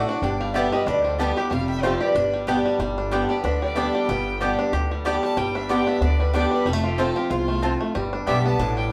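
Driving and virtuosic, this bluegrass excerpt moves at 186 BPM in 4/4 with a light swing on the eighth notes, set in G mixolydian. A metallic, nasal lap resonator guitar, played with slide and fingerpicks, carries the opening melody until 2.3 seconds. A clear, focused bowed fiddle with light vibrato, heard close as a single player, supports it with a second line from the start, then steps forward for a solo from 2.8 seconds to the end. Beneath them, a bright, boxy picked acoustic guitar sits up front with swing-style accompaniment, while a twangy, percussive banjo, also played with fingerpicks, plays arpeggios. An up-front pizzicato upright bass on steel strings adds a woody, thumpy low end, and a round, double-strung mandolin punctuates with picked stabs. The harmony shifts from Gadd9 and Fadd9 to plain G and F, and a wet studio reverb places the band further back in the room.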